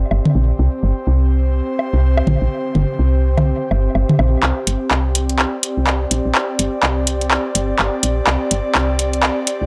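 A woody FM bass sits up front in this sparse, hypnotic minimal techno excerpt, its round, dark notes striking quickly and decaying, roughened by tube saturation. Above it an airy, breathy pad holds mellow sustained tones, its detuned sawtooth and triangle tones blended with a noise layer and thickened by chorus, swelling in slowly and lingering on a long release. In the opening stretch, electronic woodblock and toms with an analog, tape-warm character are soaked in dub echo until 4.3 seconds. At 4.4 seconds a layered electronic garage kit takes over with handclaps and metallic hi-hats, re-recorded in a small room and placed up front, carrying a build-up and drum fill to the end. A swung sixteenth-note feel and an echo-heavy mix with light reverb keep the groove loose and spacious.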